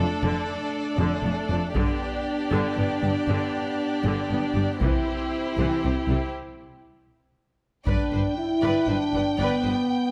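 Captured by close, detailed microphones on a scoring stage with a moderate reverb, this heroic, dramatic stretch of an epic orchestral film score in triple metre opens mid-piece as a build-up. Bowed strings carry the foundation: a lush viola section with vibrato fills the accompaniment, a focused cello section sits in the background on the bass line, and an expressive double bass section with portamento doubles beneath it. Above them, a close, vibrato-rich studio violin section plays a second line, while a soft-attacked French horn section in classical style holds sustained chords throughout. Solo taiko drums struck with hard sticks, sounding in a live room, enter at 1.8 seconds and play through the build-up, which gives way to a break at 6.3 seconds. At 7.9 seconds a new section begins as a second, smooth-topped symphonic violin section takes the melody on a high G, soft-attacked and expressive with vibrato. 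Over the passage the harmony moves from Dm/F through G and C back to G.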